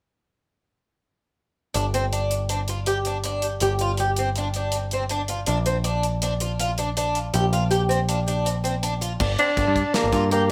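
A shimmering, octave-doubled twelve-string acoustic guitar plays delay-touched arpeggios from 1.7 seconds alongside a punchy, mid-forward studio drum kit and a direct, up-front electric bass, driving this intricate progressive instrumental in 5/4 across G5 and Bb chords until the harmony settles on Gm and a mellow, breathy tenor saxophone with vibrato enters on melody at 9.4 seconds, in a moderate studio room, cut from a longer piece.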